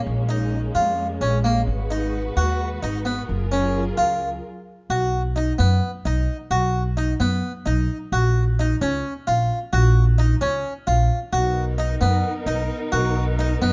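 Close, detailed microphones and light reverb frame this restless, playful contemporary chamber excerpt in 7/8 at 261 eighth-note beats per minute, where an up-front Italian-style harpsichord with two sets of strings spins full, plucked arpeggios from 0.3 seconds over a woody, dark pizzicato upright bass, while a veiled, con sordino studio string section lays lush sustained chords with vibrato from the opening, falls away at a brief stop at 4.4 seconds and returns at 11.3 seconds, as the harmony moves from A#m7 through F#maj9 to Bmaj7.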